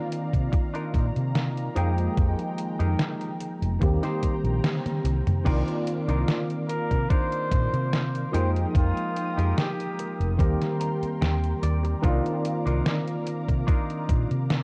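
A straight, unhurried 4/4 groove from a thumpy electronic kick and a detuned 8-bit drum machine's snare, hi-hat, toms and crash carries this nostalgic, melancholic vaporwave excerpt, where a growly, round fretless bass and a clean tine electric piano sit up front over a lush, airy detuned pad and a compressed semi-hollow guitar riff, the kick drops out for a drum fill at 4.6 seconds, a distant flugelhorn with light vibrato sings a short melody from 6.7 seconds before a clean guitar fill follows, and the whole recording wobbles with the drift of worn cassette tape.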